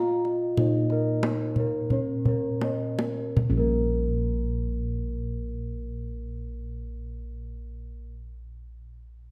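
A slow, straight 4/4 pulse of 39-49 BPM eases further in its opening 3.4 seconds, where a kendang drum fill runs from 1.6 s before the hand drum falls silent at 4.1 s, in this ceremonial, shimmering Javanese gamelan fragment cut from a longer piece. A mellow bronze metallophone carries the melody with a vintage, band-limited ring, while a second, dry and close-miked metallophone and a set of bright, airy bossed gongs spin arpeggios above, and lower bossed gongs anchor the bass with a round, beating tone. The tight, up-front kendang sits close, and a moderate recital hall reverb lends the metal a gentle bloom.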